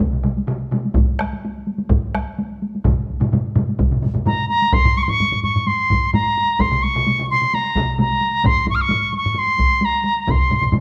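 Ceremonial and powerful, this cut from a longer Japanese traditional taiko piece in straight 4/4 gathers speed throughout, with four taiko ensemble parts: one struck with heavy sticks in a live room, two close and hard-hit, and one with a vintage, band-limited edge. At 4.3 seconds a reedy wooden piccolo enters up front with a pure, tongued melody coloured by vibrato, as the music moves into a new section at 4.7 seconds. A moderate recital-hall reverb surrounds the ensemble.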